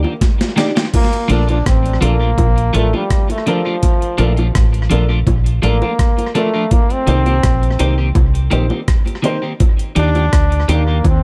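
Roots reggae at 83 BPM in Bb major, this short excerpt from a longer piece has an uplifting, sunny mood and a straight 4/4 feel, set in a small room with an echo-heavy mix. A sampler-style breakbeat drum kit enters with a brief fill at 0.2 seconds, its gritty, compressed sound sitting up front with a thumpy kick, a medium-tuned snare, rim clicks, hi-hat and crash cymbal, all carried by tape echo. Underneath, a deep, round dub bass played with the fingers holds the low end, foam-muted and dark, while low-tuned bongos struck with soft hands sit in the background. A clean, picked electric guitar with a lush chorus and tape echo supplies the accompaniment, and a mellow, woody upright piano, slightly detuned and worn, with audible action noise, adds stabs from further back. From 0.9 seconds a bright, present trombone takes a solo melody with tape echo, riding chords that move from Ebmaj7 through Bbmaj7 and Cm7 before returning to Ebmaj7.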